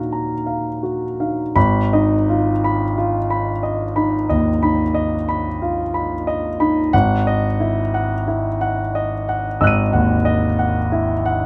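Close, detailed microphones and a light reverb place an intimate concert grand up front, with smooth, deep bass, audible action noise and a vintage cast to its tone. This short excerpt of impressionist classical solo piano in G# minor moves at a rubato 45 BPM in 4/4, tuned to A4 = 436 Hz, and carries a nocturnal, wistful mood. Ranging from G#1 to D#7, the piano opens on Ebmadd9, shifts to G#m6 at 1.6 seconds and settles on Emaj9/G# at 6.9 seconds.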